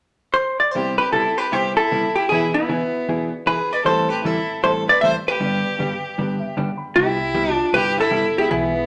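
A dark, clean vintage hollow-body jazz guitar carries the melody up front from 0.3 seconds, picked and compressed, with an intense, boxy fiddle playing a second line beside it. A fingered hollow-body guitar and a woody upright piano, the piano sitting in the background, fill out the accompaniment over Cmaj7, E/B, Am7 and G. This down-home western swing excerpt moves at 154 BPM in C major with a swung feel, set in a wet studio reverb. At 7.0 seconds a thumpy, gut-strung upright bass enters, plucked and dark, as the music moves into a new section.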